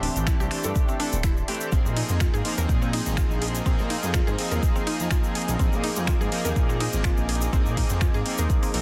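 Late-night and warm, this deep house excerpt at 124 BPM with a light swing moves between D9sus4 and Bb9sus4, built on a deep, up-front electronic kick and a tape-tinged kit of finger snaps, metallic hats and ride, joined by a quiet, grainy egg shaker, with a smooth gliding synth bass, glossy chorused polysynth stabs trailing dub echo, a detuned, warbling analog pad, and a woody, round mallet-like pluck tracing delayed arpeggios in the background, the bass, stabs, pad and pluck all pumping against the kick in a dense, heavily limited mix.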